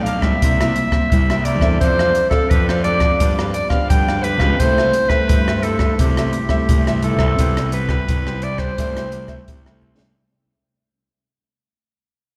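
A lush church reverb with a long tail gives this joyful, lively samba-and-choro excerpt a grand, echoing space. Out front, a bright, vintage-toned clarinet carries the melody in a classical style. A small-room cocktail drum kit sits close, with a punchy kick, a high-tuned snare, rim clicks, hi-hat and a dark, rolled-off top. A fuzz-drenched fingered electric bass adds an overdriven growl, while a nylon-string guitar is fingerpicked in a classical manner with audible finger squeak, and a crisp picked cavaquinho rings softly in the background. The harmony moves through chords such as C7 and G7, then shifts to Cmaj7 and Am7/C as the music begins to fade at 7.4 seconds, and a short drum fill at 9.8 seconds closes the clip.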